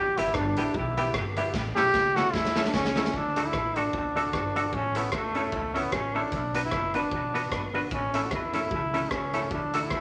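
A brilliant, up-front trombone opens this bouncy, joyful ska excerpt at 151 BPM with lightly swung eighths, playing a punchy solo over a woody, growly pizzicato upright bass, a clean semi-hollow electric guitar with tremolo and analog delay, boxy background upright piano stabs and a gritty, saturated garage drum kit whose fill runs from 1.5 to 3.1 seconds, before a smoother-topped trombone melody takes over at 2.8 seconds as the chords move from Em and A to D, A and Bm in a wet, short studio reverb.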